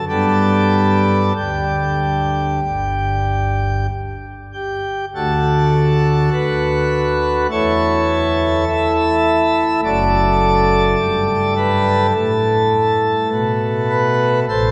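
Serene and reverent, this classical chorale-style fragment, cut from a longer piece, features a solo pipe organ on a full, brilliant plenum with mixtures and romantic voicing, placed up front and spanning F#1 to E5, moving at a rubato 47-52 BPM in 4/4 from G major into D major at 5.1 s, passing through G, D, A/E and D/F# chords and bathed in a wet cathedral reverb with a 4.4-second decay.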